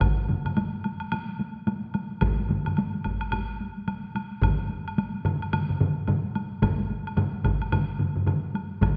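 This powerful, ceremonial Japanese traditional excerpt features a taiko drum ensemble at 109 BPM in 4/4, with a 60% swing on the sixteenths. Two taiko ensemble parts sit up front: one played with heavy sticks and close and dry, the other with hard sticks in a live room. Two solo taiko drum parts sound alongside them from the start, one with hard sticks in a small room and one with heavy sticks, vintage and band-limited, in the background, while a woody, close woodblock sits lower in the mix and a wet scoring-stage reverb lends a ceremonial breadth throughout the 9 seconds.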